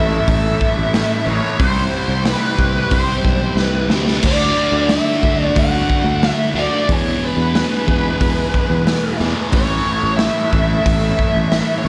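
This trippy, hypnotic psychedelic rock excerpt opens with a dark, distorted lead guitar playing a bluesy melody through wah and analog delay, set up front over a double-tracked fuzz guitar riff colored by a phaser. A bowed string section holds lush sustained chords in the background, while an overdriven, foam-muted fingered bass keeps a round, dark low end. A raw garage drum kit enters at 0.3 seconds with a punchy kick, medium-tuned snare, hi-hat and crash, sounding gritty and saturated with a rolled-off top, and it plays a fill from 3.6 to 4.2 seconds. At a straight 91 BPM in 4/4, the harmony moves from A to C, Dadd9 and E before returning to A. Light reverb and small room ambience round out the sound.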